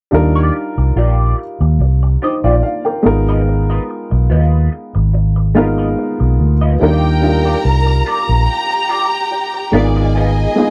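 A dark, round, foam-muted fingered electric bass punches up front in this smooth, lush soul excerpt at 72 BPM in Eb major with lightly swung 16ths, alongside an intimate baby grand piano with audible action noise and a slightly broken-up, lo-fi electric guitar riff through a small old amp with wah and analog chorus, while at 6.8 seconds a smooth, even violin section takes the melody over a distant, expressive string section line with vibrato, portamento and tape echo, captured in a dry, close 1970s-style studio recording.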